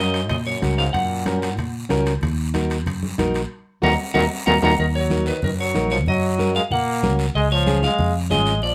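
A moderately reverberant studio sound frames this fiery, danceable cumbia excerpt in Eb minor at 187 BPM, where a round, dark fretless electric bass sits up front beneath a fingerpicked flamenco guitar accompaniment. A twangy clean electric guitar with spring reverb carries the melody, joined by a bright trombone with vibrato on the second line; both play briefly at the start, fall away, and return at 3.8 seconds. Ringing metal-shell timbales, a raspy close guiro and thick-skinned congas under soft hands fill the percussion, with a drum fill and band accent from 3.5 to 4.8 seconds leading into the second section, just as the timbales drop out at 4.7 seconds.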